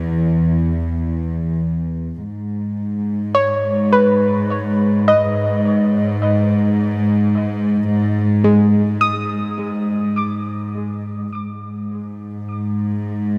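Spacious and reflective, this ambient passage in free time and G# minor is cut from a longer piece and rests on a bowed cello section holding low bass notes, soft-attacked and pure, from the opening through to 13.4 seconds. At 3.3 seconds a soft, round pluck enters with gentle, dark arpeggios, colored by chorus, cassette tape wear and tape echo, before stopping at 12.2 seconds. Both parts sit up front in a dreamy mix soaked in cathedral reverb.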